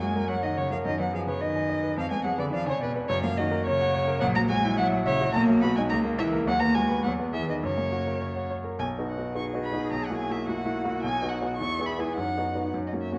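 In a straight, quick 2/4 at 107 BPM, this cheerful, lively classical-period piano trio excerpt opens in F# major and moves to B major from 4.2 s, tuned to A4 = 436 Hz. A rich, up-front violin carries the expressive bowed melody with vibrato and portamento, while a clear, focused cello with a smooth top plays a bowed second line with its own vibrato. A bright, brilliant grand piano provides polished, intimate accompaniment, its action noise audible, all set in a recital hall reverb under a dark overall production.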